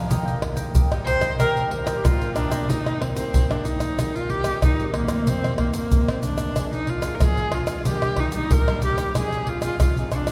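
A rich, smooth bowed viola with vibrato carries the melody up front from 1.1 seconds in this joyful, sunny samba-choro excerpt at 93 BPM in Eb major, over a crisp picked cavaquinho that plays until 2.7 seconds, a full-bodied fingerpicked nylon-string guitar with audible finger squeak, and a close, dry percussion section of egg shaker, tight surdo, pandeiro and tamborim, all set in the long, wet reverb of a church or concert hall.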